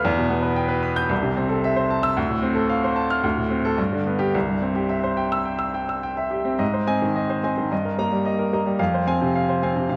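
A clear, intimate baby grand piano, up front with audible action noise and long sustain, carries this heroic, sparkling excerpt of a classical virtuoso study in 4/4 at 103-115 BPM with a rubato feel, spanning C2 to G6 as it moves from C major through Em, Am/C, Dm7 and G back to C before shifting to Ab major at 6.6 s, set in a moderate recital hall reverb with a dark production.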